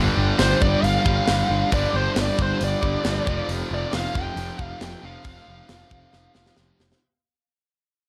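A straight 4/4 pulse at 136 BPM drives this menacing, aggressive hard rock fragment, with a tight metal drum kit (high-tuned snare, tight kick, rolled-off top) entering at 0.4 s and closing on a fill at 6.1 s. Two bright, picked guitars, one overdriven and set back, the other high-gain, play a low riff over a punchy fuzz bass placed up front, with the harmony moving from G5 to F5 at 3.3 s. Above them a dark, bluesy lead guitar solos through plate reverb as the whole passage fades out.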